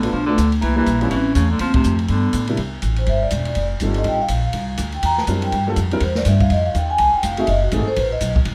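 Small-group swing and bop jazz at a brisk 245 BPM in C mixolydian, sophisticated yet relaxed, with a dark, warm production and moderate studio reverb. A mellow vibraphone played with soft mallets carries the melody over a concert grand piano with audible action noise, a woody pizzicato upright bass sitting up front, and an open jazz drum kit with dark cymbals and a boomy kick. A vintage-toned baritone saxophone adds a second line until 2.5 s, the band hits an accent at 1.7 s, and from 2.6 s the vibraphone takes a solo over the changes in this short cut from a longer piece.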